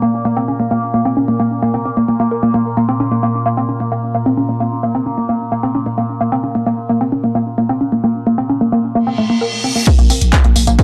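A woody, wave-folded pluck riff with lush chorus and tape echo pumps over a resonant, overtone-sweeping sawtooth drone in Bb minor, carrying an industrial, relentless mood in this driving peak-time techno cut at 131 BPM until a reverse cymbal enters at 9.1 seconds. At 9.9 seconds a punchy up-front kick and tape-warm analog drum machine hats, claps, tambourine and crash crash in, joined at 10.0 seconds by a growling, buzzy 808-style bass, all in a gritty stone room.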